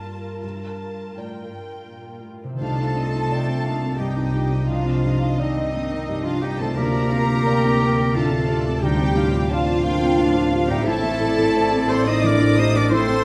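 A felt-muted upright piano, soft and intimate with audible action noise, opens this bittersweet, sorrowful cinematic excerpt at 87 BPM in a rubato 3/4, alongside a ringing concert harp in arpeggios, a very quiet, woody viola section, a close chamber cello section carrying the bass, and a warm violin section singing the melody sul tasto in the background. At 2.6 seconds the texture fills out as a mellow French horn section holds tight sustained chords, a dark, lush double bass section deepens the low end, and three second lines arrive: a bright solo clarinet, a pure, floating studio violin section, and a hollow flute section with vibrato and a soft attack. The harmony moves from Gm7 through Cmadd9 and Dm7 to Am, lending the phrase a searching, melancholy colour. Around 6.8 seconds a very quiet timpani with hard mallets adds a brief, dry, articulate touch. The whole excerpt sits in a dark production bathed in a wet scoring-stage reverb that gives the ensemble a soft, distant glow.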